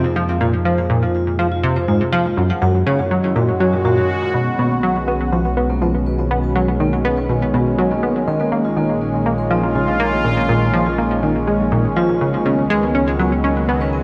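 Expansive and cosmic, this sequencer-driven ambient space music at 122 BPM in 4/4 moves from Gb lydian to B lydian at 4.3 s, led by a punchy, funky plucky analog bass riff with ring-modulated sawtooth bite and delay up front, while a bright, detuned sweeping resonant pad holds sustained chords with chorus, a dark, metallic vibraphone spins arpeggios with slow motor vibrato and delay, and a mellow analog drone with pulse-width modulation rumbles beneath, the whole sitting in a moderate concert-hall reverb.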